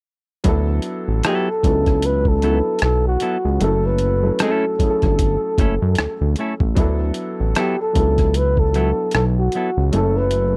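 A dry, close 1970s-style studio sound frames this smooth, sensual neo-soul R&B excerpt at 76 BPM in D major, where a breathy, whispered flugelhorn carries the melody up front from 1.3 seconds over a clean, twangy electric guitar line, a fat, detuned sawtooth analog bass, a gritty, pitched-down boom bap sampler kit with a thumpy kick, rim click and hi-hat, and a woody, slightly detuned upright piano with audible action noise, all moving between D69 and F#m7 with a swung sixteenth-note feel.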